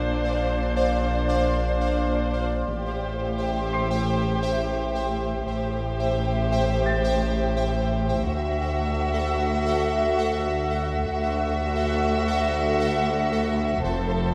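A wet recital-hall reverb surrounds this uneasy, tense cinematic excerpt in A phrygian at 86 BPM, where a pulsing, tempo-synced gated texture of detuned triangle tones, treated with chorus, holds sustained chords up front over bowed cello and double bass sections and a deep, saturated sine sub bass drone. A smooth viola section carries the accompaniment until 2.4 seconds, and at 2.7 seconds a focused violin section with vibrato takes up a second line as the harmony moves from Bbadd9 to Am7 and then to Dadd9 at 8.3 seconds. High in the background, a brilliant grand piano adds short-sustained texture until 13.9 seconds.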